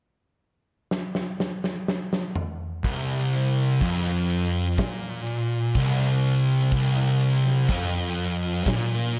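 The two thick fuzz guitars stand out most, sitting up front with a dark, distorted riff. The first lands at 2.8 seconds on a C5 power chord and the second joins at 2.9 seconds, both staying low, between C2 and Bb2, until the end. This is a stoner and doom metal excerpt at a slow 62 BPM in a straight 4/4, with an ominous, hypnotic mood. A big rock drum kit opens things at 0.9 seconds with a fill of kick, snare, toms and ride cymbal, its punchy kick and medium-tuned snare heard in a big room with a smooth, rolled-off top. Once the picked guitars enter, the drums carry on beneath them to the close at 9.2 seconds. The guitars' fuzz gives the riff a heavy, saturated weight, while a light reverb adds a touch of space to the sound.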